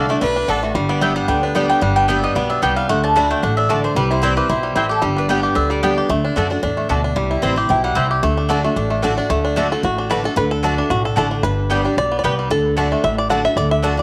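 A swung 225 BPM bluegrass drive in 4/4 and D mixolydian sets a virtuosic, rustic mood, with thumpy pizzicato upright bass and a full-bodied, picked dreadnought guitar underpinning a woody mandolin melody that stops at 8.1 seconds, while a second double-strung mandolin adds stabs throughout. A biting, airy fiddle line flickers in only briefly near the start. The up-front, twangy five-string banjo, treated with tape echo, carries the melody and takes a bright fingerpicked solo from 9.3 seconds, all set in a moderate echo-chamber studio reverb in this cut from a longer piece.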